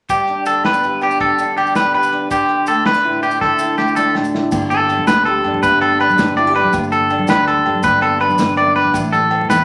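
A straight 12/8 lilt at 108 BPM drives this sunny, danceable highlife guitar band in G major: a twangy, slightly broken-up electric guitar plays picked arpeggios up front over a boxy, fingerpicked nylon-string guitar with audible finger squeak, while a dark, smooth soul drum kit with a tight kick rolls through a fill at 3.4 seconds and ringing agogo bells and grainy maracas sit in the background, until a direct, amped fingered electric bass and high-tuned, soft-handed congas join at 4.5 seconds, the whole mix bathed in wet large-studio reverb and vinyl crackle.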